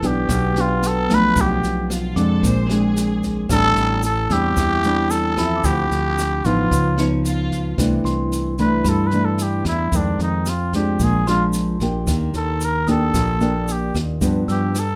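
Bossa nova at 112 BPM in C major, relaxed and romantic, with a cup-muted trumpet up front carrying the melody in a veiled, raspy, growling jazz voice with light vibrato and scooped notes, taking a solo from 7.8 seconds. A dark, thumb-plucked nylon-string guitar sits close alongside it, over a direct fingered electric bass, a brushed drum kit with rim clicks and a boomy kick, and a grainy tube shaker in the background. A clean tine electric piano enters at 2.2 seconds, and a lush, distant violin section adds brief bowed lines with portamento, all in light reverb over chords such as Em7, Bb9, Dm9 and Ebmaj7.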